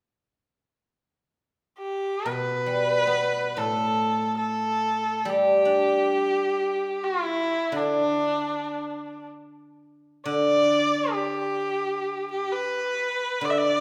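Festive and graceful, this passage from a longer work in the Chinese traditional style comes from a small chamber ensemble. A single bowed erhu enters at 1.8 seconds and carries the melody with a rich, smooth and even tone, colored by vibrato and sliding portamento between notes. The guzheng joins at 2.3 seconds as accompaniment, its fingerpicked strings sounding bright and silvery as they ring beneath the melody in a lower register. Both instruments sit up front and play together until 13.8 seconds. A reverberant recital-hall ambience, like that of a church or concert hall, surrounds the pair and lets each note linger.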